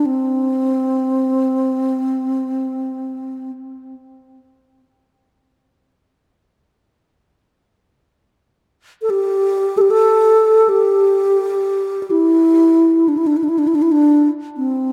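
A breathy bass flute carries this calm, meditative world piece entirely on its own from 0.0 to 14.9 s, sitting up front in the mix. Its tone is warm and touched with vibrato, and each note begins with a crisp attack. An analog delay trails the flute, and a wet spring reverb with a long tail gives the recording a spacious, echo-heavy sound. The same phrase is heard twice, the second time beginning at 7.8 s, which gives the passage a peaceful, unhurried sense of return. This is a short section cut from a longer piece.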